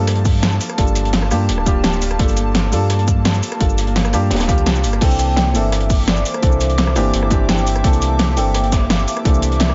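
Close and dry, with little reverb and a dull top end, this soulful, lush excerpt of liquid drum and bass runs at 170 BPM in a straight 4/4, moving from Gm9 to C13 at 5.0 seconds. A deep, full sub bass with an octave layer sits up front, joined by a punchy, overdriven electronic kick from 0.3 seconds. A layered pop drum kit adds a fat snare, metallic hats, crash, rim click and shaker with overdrive, while a gritty, saturated breakbeat kit with a high-tuned snare stays in the background, its hats, snare and room high-pass filtered. A dark, worn grand piano with audible action noise and short sustain plays the accompaniment through a delay, under an airy, breathy pad of detuned sawtooth and noise layers whose slow-attack chords pump with the sidechain and shimmer with chorus. At 5.0 seconds a close-miked vibraphone with soft mallets enters on the melody, ringing and metallic with a medium motor vibrato, its notes echoed by delay.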